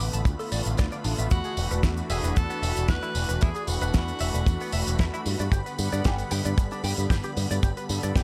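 A damped 70s drum kit with a fat snare, hi-hat and tambourine sets a straight 4/4 nu-disco groove at 114 BPM, soon joined by a cabasa tucked in the background and a dry, tight kick up front, while a punchy picked bass with an envelope filter and tube saturation drives underneath. A twangy, scooped clean electric guitar riff with lush chorus sparkles over a detuned, warbling analog pad and a full-bodied vintage string machine, both pumping against the kick through Dm6, E9sus4 and Gmaj7. From 1.3 to 5.3 seconds an edgy tenor saxophone with light vibrato and analog delay sings a sunny, feel-good pop melody in this brief cut from a longer piece.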